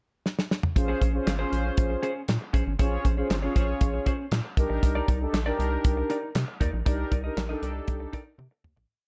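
A dark studio reverb wraps this short, complete piece of early-eighties boogie funk, giving it a slick, late-night mood. A damped 70s drum kit opens with a fill at 0.3 s and then sits up front with a dry, mid-tempo boogie beat: a tight kick, a medium-tuned snare layered with handclaps, hi-hat and toms, all with a rolled-off top. At 0.8 s the rest of the band arrives over a Bbm9 chord that later moves to Cm9. A rubbery square-wave bass plays a fat, bouncy, syncopated boogie line with a hollow, resonant filter pluck. Mellow synth brass, round and sawtooth-edged with a soft attack, a filter sweep and chorus, pushes rootless chords. A clean, compressed semi-hollow electric guitar adds choppy sixteenth-note figures through lush chorus, before the whole piece fades out from 6.9 s.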